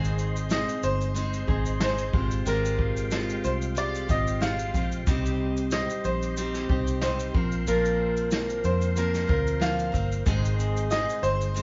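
A lightly swung 16th-note groove at 92 BPM in 4/4 carries this tender, reflective acoustic pop excerpt, set up by a vintage brush kit with a punchy kick, a medium-tuned snare and shaker in a pumping studio room, alongside a dark, foam-muted fingered electric bass that sits round and up front. A bright, full-bodied dreadnought steel-string acoustic guitar provides picked accompaniment with audible finger squeak, while a clean, compressed electric guitar recorded direct plays arpeggios in the background. A reedy tonewheel organ holds sustained chords further back, colored by chorus vibrato, key click and a slow rotary speaker. At 0.5 seconds a brilliant, woody upright piano enters with an intimate melody, its action noise audible. The harmony moves from Ab through Fmadd9/Ab, Cm and Bbsus2 before returning to Ab, and the band sounds as if playing live in one room, with wet reverb and a top end that stays soft.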